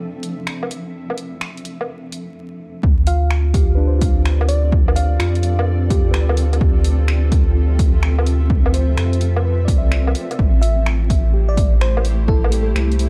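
Future garage with a nocturnal, melancholic mood and a swung 16th-note feel, opening on muted, soft felt-like synth keys with dub echo and a cloudy, evolving granular pad, both pumping against the sidechain, while a deep house kit of overdriven finger snaps, hi-hat and woodblock sits in the studio reverb. After a short break, a punchy, overdriven electronic kick and a deep, round sub bass arrive up front at 2.8 seconds, and a bell-like, sparkling FM electric piano carries the melody from 3.1 seconds and returns at 10.6 seconds as the harmony moves from Dm7 to Am7. The dark digital ambience is dusted with vinyl crackle, and the excerpt is cut from a longer piece.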